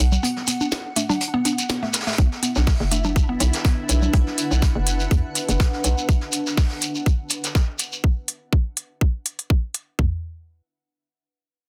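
A hollow, bouncy FM bass and a cloudy, blurred granular pad, both pumping against the beat, open this cool, sparse minimal techno excerpt. They are joined by dry analog congas with delay, a grainy shekere, a woody mallet-like pluck with chorus and digital delay, a brushed vintage kit with a rolled-off top, and a clicky minimal kit with a tiny snare. A tight, layered garage kit brings in kick and toms at 2.2 seconds, followed at 2.5 seconds by a bright, detuned gated texture pulsing faintly in the background.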